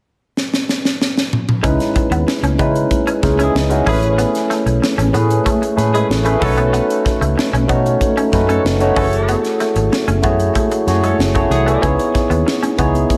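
Polished 1980s jazz-funk pop in C# minor at 94 BPM, nocturnal and bittersweet, opening on a crisp fusion drum fill with gated reverb and a high-tuned snare before a barky, lightly overdriven tine electric piano with lush chorus, a round, foam-muted fingered bass and very quiet, soft-handed congas enter at 1.6 seconds. A twangy, slightly broken-up electric guitar riff with ensemble chorus sits in the background, while a clear, tight horn section with light vibrato and digital delay adds a second line from 3.4 to 11.9 seconds. The harmony moves through C#m9, Amaj9, B9 and F#m9 chords in a small, lightly reverberant room, with lossy compression artefacts on this cut from a longer piece.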